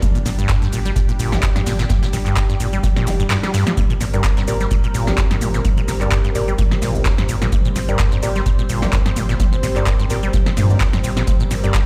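Heard through a big sound system in a bare room with a large studio reverb, this gritty, trippy acid house excerpt swings over a deep, tape-warm electronic kick up front, an analog drum machine with punchy snare, metallic hats, handclaps, shaker and toms, and a very quiet brushed acoustic kit with a fat snare and rolled-off top. A squelchy, resonant sawtooth acid riff with tube saturation and analog delay pumps alongside a round sine sub bass, while a lush, detuned unison pad holds sustained chords through chorus and phaser. A very quiet electronic swell enters just before the kick drops out for a drum fill at 3.3 seconds, and from 4.1 seconds a soft, evolving chord stab with a filter sweep, chorus and delay joins the groove.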